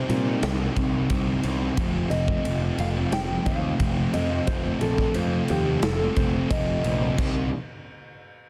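A fingerpicked nylon-string guitar carries a classical-toned solo melody with tape echo and audible finger squeak over this brooding, dark quiet-loud alternative rock fragment at 89 BPM, as a slightly broken-up electric guitar through a small old amp plays chorused arpeggios until 1.8 seconds, two thick fuzz guitars grind a shadowy distorted riff in the background, a growly overdriven fuzz bass sits up front, and a big rock drum kit with a punchy kick and brilliant cymbals drives the Cm to F progression in a dense, heavily limited mix with light room reverb.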